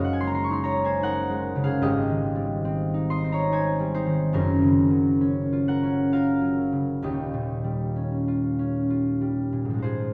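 Classical solo harp in a dreamy, peaceful mood, this brief excerpt from a longer piece has an up-front, fingerpicked concert harp drift in a rubato triple metre across a span from Eb1 to Db6, its warm, ringing tone wrapped in the lush reverb of a scoring stage as rich chords such as Gb69, Abmaj7 and Eb9 unfold.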